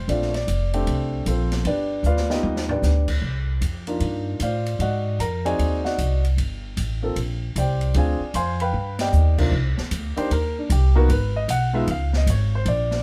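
A grand piano carrying the melody and an up-front, woody pizzicato upright bass open this swinging, cool jazz piano trio fragment together, joined at once by an acoustic drum kit with dark cymbals, a high-tuned snare and a boomy kick, the kit adding fills at 2.0 and 8.7 seconds, the second one spanning a band accent at 8.9 seconds, all heard as a live group in one room with light reverb over rich extended chords such as Bbmaj9 and G7b13.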